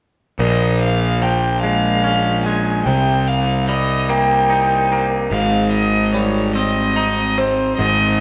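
Cinematic and hopeful, this brief rock excerpt moves in a slow, straight 6/8 at 49 dotted-quarter beats per minute, tuned slightly sharp at A4 = 445 Hz, as chords shift from Bbm7 to Cm7 at 2.9 seconds and settle on Abmaj7 at 5.3 seconds. A single bowed violin carries the melody up front with a soft, floating sul tasto tone, while a bright, twangy, clean electric guitar picks compressed arpeggios and a fuzzy, overdriven picked bass sits forward beneath them. The band sounds live together in a stone room with a wet, lingering reverb and a softened top end, all three parts playing from 0.4 to 8.2 seconds.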